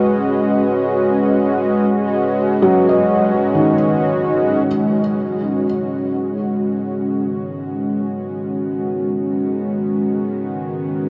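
Ambient music, serene and luminous, drifts in free time as a smooth analog pad with chorus holds sustained Badd9 chords up front throughout. A soft, felt-muted upright piano plays intimate arpeggios with audible action noise and a diffuse delay from 2.6 to 5.7 s, and a tense, detuned, string-like drone with vibrato fades in behind from 6.7 s. A huge reverb and the warbling pitch drift of worn cassette tape soak this cut from a longer piece.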